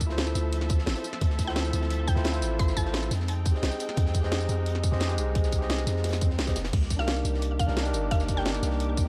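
Dreamy and rolling, this liquid drum and bass excerpt moves at 174 BPM in a straight 4/4, its chords drifting from Dm9 to Fm9 at 3.1 seconds and on to Cm9 at 6.7 seconds. A deep, mellow 808-style bass with tube saturation sits up front under a tight, layered electronic kick, while a garage kit adds a cracking snare, bright hats, crash and tambourine. Further back, a crunchy breakbeat kit brings a gritty, rolled-off small-room snare and hats through high-pass filtering. An overdriven tine electric piano plays bright accompaniment through a combo amp with dub echo, and a distant, lush string section holds bowed chords with vibrato and sidechain pumping. A woody, round FM pluck carries the melody in two short phrases, first at 1.5 seconds, colored by chorus, cassette tape and digital delay, and a very quiet electronic swell sounds briefly just after 6 seconds within the dark production and light studio reverb.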